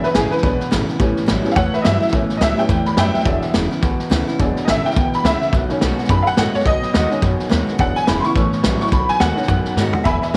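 Rockabilly at a brisk, swung 212 BPM in E major, upbeat and rowdy, this excerpt features a jangly, detuned honky-tonk upright piano soloing up front over a twangy, slightly broken-up electric guitar riff, a thumpy, woody pizzicato upright bass, a full-bodied picked acoustic guitar with finger squeak sitting in the background, and a punchy vintage drum kit with a rolled-off top that closes on a fill at 9.8 seconds, all in a small room with light reverb as the chords move through E7, A7 and B7.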